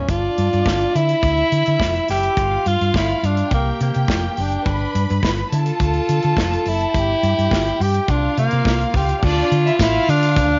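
A breathy, subtoned tenor saxophone carries the jazz-style melody up front from the first moment of this driving, danceable disco excerpt in D minor at 105 BPM, joined at once by a lush bowed violin section on a second line, a dark, round hollow-body electric bass and a mid-forward acoustic drum kit with crash, hi-hat, kick and snare, while a jingly tambourine sounds briefly in the background at 9.8 seconds, the mix set in a small room with light reverb on a muffled home cassette recording.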